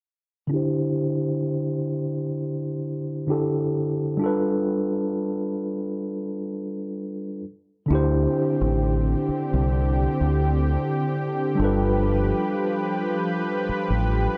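R&B with a moody, late-night feel and a gently swung groove, this passage cut from a longer piece opens with a mellow, clean tine electric piano playing alone under a low-pass filter, a filter sweep running from 0.5 to 7.9 seconds over D7sus4 and G7 chords. At 7.9 seconds a lush, detuned sawtooth pad with chorus and slow attack arrives alongside a round, dark fingered dub bass that sits up front. The dry, gritty hardware recording carries only light reverb.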